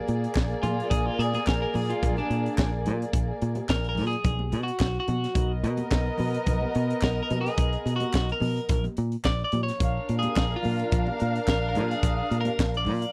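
A dark, woody violin section opens this driving, danceable disco cut, its bowed vibrato lush and smooth on top as a tight funk kit with a high-tuned snare and a bright, punchy fingered bass join almost at once, with a clean electric guitar solo running throughout. A compressed, slightly broken-up picked electric guitar comps up front from 0.6 seconds, while ringing, high-tuned congas and hollow group handclaps sit in the background over a Bb7 to Bmaj7 and back to Bb7 progression. The sound is dry and close, like a 1970s studio recording.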